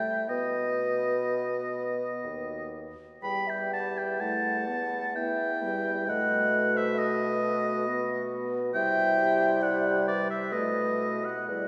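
Moving in a flexible, rubato three-four, this slow romantic movement for wind quintet sounds yearning and solemn, a short passage cut from a longer piece. A hollow, airy flute with vibrato and a crisp attack carries the melody close at hand, a clear, up-front oboe sings a second line above it, and a distant, mellow French horn with a soft attack supplies accompaniment from the start. From 0.3 seconds a dark, smooth clarinet adds accompaniment in the background and a roomy bassoon with light vibrato takes the bass, the quintet bathed in the long, wet reverb of a church.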